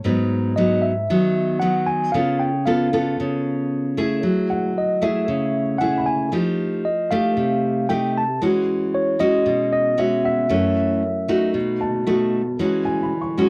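A fingerpicked nylon-string guitar sits up front in this breezy, romantic bossa nova, its fresh strings giving a warm classical tone with the occasional finger squeak as it carries the accompaniment throughout. Over it, a mellow tine electric piano sings the melody from 0.6 to 11.5 seconds, its clean, direct voice staying high in the upper register. A grand piano with a warm, short sustain adds soft touches high above, first from 4.5 seconds and again from 10.2 seconds, sitting well back in the mix. The harmony drifts through lush chords such as G#m7, C#7alt, F#m9 and F9 before settling on E69, with a turn through F#m7 and B7 that comes back to E69 at the close. The sound is dry and close, like a 1970s studio session, with only light reverb around it, and the passage is cut from a longer piece.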